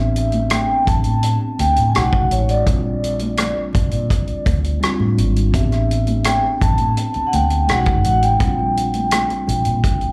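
Cinematic and silky, this lush 1970s-style soul excerpt moves at an easy straight pulse over Am11, B69 and Bb69 chords, with a mellow, ringing vibraphone carrying the melody through slapback and tape echo above a clean electric piano heard through its built-in speakers. A dark, foam-muted fingered bass sits up front with a round, punchy tone, joined at 0.2 seconds by a tight, mid-forward soul drum kit of hi-hat, kick and rim click with a rolled-off top. High-tuned, damped congas with their own slapback echo sit in the background from 0.3 seconds, and the whole performance has the feel of a live club gig heard through the venue's PA, with club and small room reverb.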